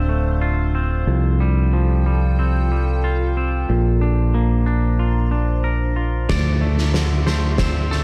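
Post-rock in a melancholic, cinematic vein, this excerpt opens with a clean, twangy electric guitar picking arpeggios through tape echo, over a growly fingered bass sitting up front and an evolving wavetable pad whose slow-attack chords morph beneath chorus, phaser and their own reverb. At 6.3 seconds an oversized, low-tuned drum kit arrives gritty and saturated, its fat snare and punchy kick pumping in a bright stone room. A second, compressed guitar also appears in the background at that point, its arpeggios wavering with a warbly pitch drift and tape echo, all within a dark, reverberant production.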